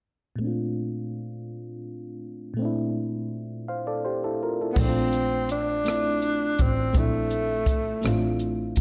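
A dark, warm production with moderate plate reverb and studio ambience frames this tender, sensual slow R&B in 6/8 at 55 BPM, cut from a longer piece. A mellow FM electric piano with a noise layer and a filter sweep opens alone on a Bbmaj9 chord at 0.4 seconds. At 4.8 seconds a dry, compact cocktail drum kit with dark cymbals and a punchy kick enters together with a distant bowed double bass with vibrato and portamento, while from 4.7 seconds a breathy, whispered tenor saxophone plays an intimate jazz-style solo with scooped notes up front.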